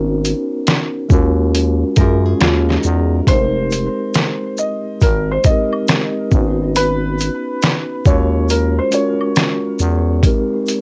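A compressed, pitched-down sampler-style drum kit sits up front in this nostalgic, melancholic lo-fi hip hop excerpt, entering at 0.2 s with a thumpy kick, medium-tuned snare, hi-hat and shaker that sound muffled and tape-colored. At a slow 69 BPM in 4/4 with a swung sixteenth feel in F phrygian, a growling, thick FM bass with a fast attack holds the low end through tube saturation. A mellow tine electric piano, clean and heard as if through its built-in speakers, carries the minor eleventh chords through cassette tape and a low-pass filter. From 2.0 s a full-bodied, fingerpicked nylon-string guitar briefly adds a background second line, treated with tape echo and plate reverb. At 3.3 s a soft, felt-muted upright piano takes the melody, intimate with a thin felt tone, filtered and tape-echoed, while a close, dry tube shaker, woodblock and group handclap join quietly behind. The whole excerpt has the feel of a home cassette recording in a small room, and it closes on a major ninth chord.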